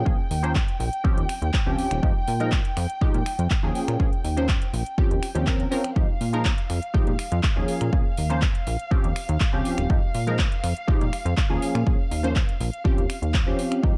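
This nostalgic, funky slice of filtered disco house opens with a detuned sawtooth polysynth comp, a dark, bowed chamber string section holding sustained chords high up, and a plucky analog bass, all arriving together. A punchy, up-front electronic kick joins at 0.1 seconds, and a house kit of finger snaps, handclaps and metallic hi-hats follows at 0.3 seconds, its hats pumping against the kick. The polysynth carries chorus, tremolo, phaser and a filter sweep. The bass has a fast-attack sawtooth and pulse-wave filter pluck that decays. The strings are smooth and evenly voiced with vibrato, roughened by a vintage 12-bit sampler grit. Polysynth, strings and bass all pump under sidechain compression and sit behind a low-pass filter, while a cycling progression of Bbm, Eb13, Fm9 and Bbm7 moves beneath a digital ambience in a dark, warm mix.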